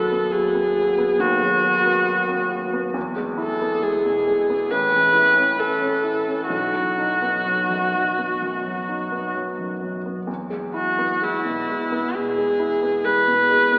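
A smooth, warm viola carries the melody over a clear grand piano from the first moment, in a serene, romantic chamber piece in E major that drifts with rubato at about 62-69 BPM, tuned slightly low to A4 = 437 Hz. The bowed viola, played by one musician with light vibrato, sits high in the mix over the piano's polished, intimate accompaniment, whose long sustain and audible action noise give it presence as the harmony moves from B/D# to E at 3.0 seconds, then through A and B before settling back on E at 10.3 seconds. The duo is bathed in a wet church reverb and heard from further back in the room, with an AM radio sound that lends this warm fragment, cut from a longer piece, a hazy, distant quality.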